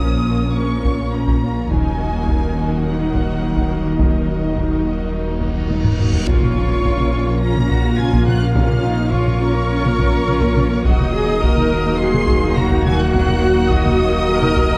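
A dark, warm concert-hall sound with moderate reverb frames this brooding, relentless excerpt of a hybrid orchestral and electronic film score in Bb minor, moving at 105 BPM in a straight 4/4 over Bb minor and Eb minor chords. Softly attacked, expressive violins carry the melody high above a distant second violin line, intense violas, focused cellos, close double basses, a breathy chorused pad and a menacing, evolving detuned saw bass with a filter swell. Hard-stick taiko drums enter at 0.8 seconds, an electronic reverse cymbal and drum fill lead to an impact at 6.3 seconds, and a very quiet, punchy French horn section joins there with sustained chords.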